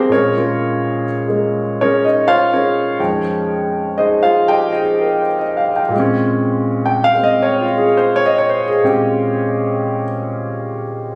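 Captured on a phone in the room and touched with light reverb, this brief cut from a longer piece places an intimate concert grand up front, its action noise audible and its bass deep. The solo jazz playing feels cool and smoky, drifting with a loose rubato over a relaxed swing as it moves from Bbm9 to Fm9 and back to Bbm9 at 5.9 seconds. The piano alone fills all 11.2 seconds, ranging from F2 up to G5 with a natural tone.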